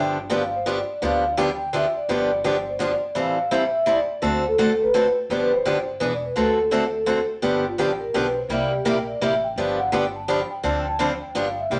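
A swung 3/4 pulse at 168 BPM drives this charming acoustic string swing passage in G mixolydian, with a bright, boxy parlour steel-string guitar picking the chords up front and a dark, woody, thumpy pizzicato upright bass on gut strings sitting quieter beneath. Over them, a vibraphone played with soft mallets carries the melody in a mellow, vintage, band-limited tone with a slow motor vibrato, then takes a solo from 7.4 s as the chords move through G7, C7 and Dm7. Studio reverb lends the room a wet sheen, and the passage is cut from a longer piece.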